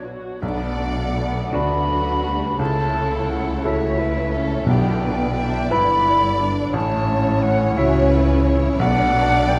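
Longing and bittersweet, this rubato cinematic passage in 6/8 opens with a close, portamento-tinged violin melody in the background, a pure, distant flute second line, dark soft-attacked violas, rich cellos and a bright grand piano whose action noise is audible, before a smooth-topped second violin section, roomy French horns, lush double basses and very quiet, close and dry timpani join at 0.4 s, set inside a wet scoring-stage reverb.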